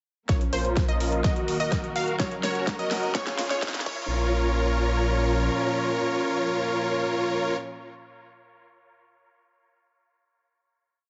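A short, powerful and anthemic festival progressive house piece in Bb minor at 126 BPM opens at 0.3 seconds with nearly every part arriving at once: a huge, thick supersaw riff up front in dotted-rhythm chords, filtered and swept through a long build-up, with dub echo trailing behind it. Beneath it, a dark, bowed string section holds soft, sustained chords, while a bright unison pluck doubles the chords in arpeggios, all of them pumping with sidechain. A punchy, overdriven four-on-the-floor kick drives the build alongside a big-room kit of metallic hats, a huge snare and crash in a drum fill, and a deep, saturated sub bass follows the chord rhythm through Bbm, Ebm, Gb and Db. A very quiet riser slips in at 2.3 seconds, and the drums drop away at 4.0 seconds, just before the final hit at 4.1 seconds, where the supersaw, strings and pluck ring on over the bass until it stops at 5.5 seconds. 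The sound is polished and compressed, set in a light digital reverb with a softened top end.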